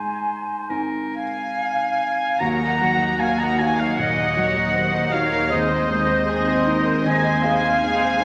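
Sorrowful and moving, this cinematic fragment, cut from a longer piece, unfolds in a free, rubato 4/4 over Ab, Ebm and Ab/Eb harmonies. At the opening, a clear solo oboe and an airy flute section with vibrato carry high second lines. Meanwhile, a very quiet clarinet in a soft-attacked classical style holds a single note for the first 1.5 seconds, and a felt-muted upright piano, intimate and vintage with audible action noise, accompanies from the background. A violin section enters at 1.1 seconds on a floating, sul tasto second line. At 2.4 seconds a second violin section takes the melody with a smooth top, violas fill in pure bowed accompaniment, and cello and double bass sections, both dark and close with light vibrato, anchor a low Eb while a mellow French horn section adds tight sustained chords in the background. The oboe and clarinet sound distant and roomy, and a wet scoring stage reverb lends a spacious glow.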